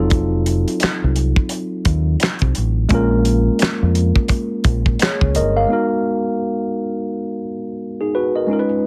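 An 86 BPM groove in 4/4 with a 60% swing on the sixteenths sets up this smooth, late-night neo-soul and R&B excerpt in G# dorian, moving from F7b9 to A#m7 and settling on G#m9 as the second section begins at 5.7 seconds. A dry, damped 70s drum kit with a fat snare, tight kick, hi-hat and handclaps sits up front alongside a round, punchy, dark fingered dub bass, and both drop out around 5.6 seconds, leaving a worn, slightly out-of-tune tine electric piano, bathed in plate reverb, to play alone until 8.9 seconds. The whole mix carries a heavily compressed radio sound within a small room.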